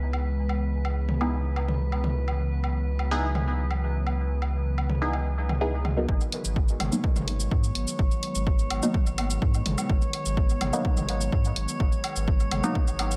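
Dub techno with a nocturnal, deep mood, opening on a breathy, phased pad over a round sine sub bass and a glassy, drifting texture, all pumping against the sidechain, while overdriven woodblock and toms ring through dub echo and muted, detuned sawtooth chord stabs with a filter sweep and cassette-tape grit enter at 1.2 seconds. At 6.1 seconds the harmony moves from C#m7 to G#m7 as a punchy, up-front analog kick arrives alongside an electronic shaker and hi-hat. The sound sits in a light digital ambience, cut from a longer piece.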